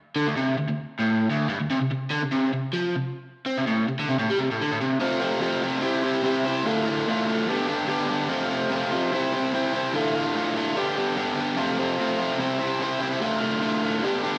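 Swaggering and gritty, this rock excerpt in D dorian at 146 BPM features a lone overdriven electric guitar, picked, double-tracked and up front with spring reverb, ranging from D2 to C5 from 0.2 s, opening on a D5 power chord before cycling through F, C, Dm and G from 5.0 s in a stone room that suggests a band playing live.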